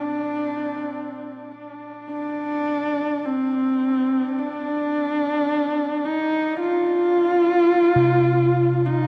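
In free time, this desolate, ominous ambient fragment, cut from a longer piece, fades in over its 9.1 seconds on bronze, gamelan-type bossed gongs whose round, beating tones roll through low arpeggios. Up front, a single bowed horsehead fiddle carries a husky melody with expressive vibrato and portamento, its line trailed by delay. A dreamy plate reverb soaks the mix, and a cassette-tape grain adds to the gloom.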